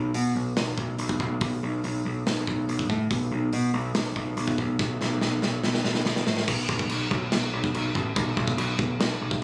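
Aggressive and heavy, this short heavy metal clip, cut from a longer piece, drives at 142 BPM in a straight 4/4, tuned slightly below standard pitch to A4 = 436 Hz. An overdriven, picked electric bass carries the low end from the very start, its growly, bright tone sitting up front as it moves between A1 and B2. A big acoustic rock drum kit joins at 0.1 seconds, with a punchy kick, a medium-tuned snare, hi-hat and bright crash and china cymbals, also placed up front. A drum fill from 4.8 to 6.5 seconds marks the shift into a new section that carries on until the clip ends at 9.4 seconds. The sound is dry and compressed, caught on a phone in a studio room, so the ambience of the space comes through around the playing.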